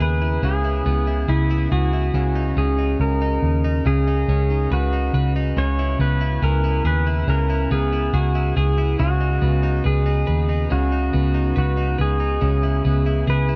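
This dream pop excerpt is haunting and melancholic, moving at an unhurried pace in a straight four and resting on a single E over C# chord throughout its 13.6 seconds. A pedal steel guitar carries the melody, played with fingerpicks and slide, its clean, compressed tone shaped by volume swells and trailed by digital delay. Beneath it, a twelve-string electric guitar picks bright, twangy arpeggios, lightly chorused and echoed by its own digital delay. A vintage electric bass, foam-muted and picked, sits up front with a round, amped presence, holding low notes that anchor the harmony. The whole production feels dark and warm, wrapped in light reverb and a digital ambience that deepens the wistful, suspended atmosphere.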